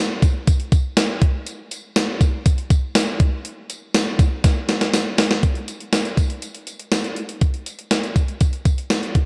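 A gated 80s digital drum machine starts at 0.2 s, carrying a straight 4/4 pop groove at 121 BPM with a thumpy kick, hi-hat, tambourine and a snare bathed in gated reverb, all overdriven and sounding re-recorded in a small room, sitting up front. A jingly, band-limited acoustic tambourine sits in the background with a vintage character, while a drum fill from 4.4 to 5.4 s leads into a new section. The dark production with light reverb gives this short cut from a longer piece a nostalgic yet uplifting mood.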